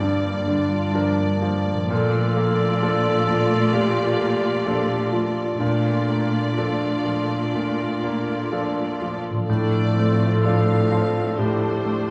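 Bittersweet and full of longing, this short cut from a longer cinematic film score moves at a slow, rubato 60-66 BPM in 4/4, drifting from Gm7 to Bbmaj7 and settling on F6/A near 9.5 seconds. A clear, intense violin section carries the melody with vibrato, sounding somewhat distant, while a dark, smooth-topped solo clarinet sings a second line beneath it in classical style. A bright, brilliant baby grand piano gives intimate, polished accompaniment, its action noise audible, alongside a lush viola section whose expressive portamento adds tenderness. A focused cello section anchors the bass, and from 1.7 seconds a mellow, thumb-plucked concert harp adds ringing arpeggios in the background. The orchestra sits further back in a wet scoring stage, its reverb lending the strings an expansive, yearning glow.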